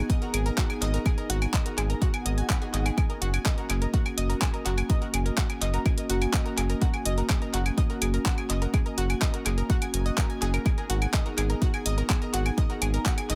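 Melodic techno at 125 BPM, driving and dark, this excerpt moves from G#m to F# and back under a punchy, up-front electronic kick re-recorded in a large room, while a deep house kit of claves, handclaps and hi-hat carries tape echo. A round, deep analog bass sits forward in the mix, and a moody, detuned analog pad with a slow attack, a moving notch and chorus holds sustained chords. A bright filter-pluck arpeggio with subtle chorus and dub echo pumps along with the pad and bass, and a brief electronic swell appears in the background at 2.2 s within a digital, echo-heavy ambience.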